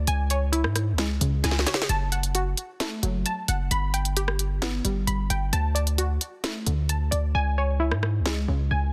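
The distorted 808-style bass dominates this dark, menacing trap excerpt, a heavy, aggressive sine tone with a gritty noise layer and a fast attack that decays, sitting up front from F#1 to G#2. Above it, a glassy wavetable pluck plays arpeggios from C#3 to B5, its crystalline, detuned digital tone evolving through a filter sweep, with chorus and delay adding shimmer. The trap drum kit moves in a half-time feel at 132 BPM, with crisp hi-hats, a sharp snare and rim clicks, and a drum fill arrives at 1.4 seconds. Chords cycle through C#m, F#m, G and D before returning to C#m at 7.3 seconds, where the hi-hats drop out until the close at 8.9 seconds. The mix is dry, with a dense, heavily limited modern master.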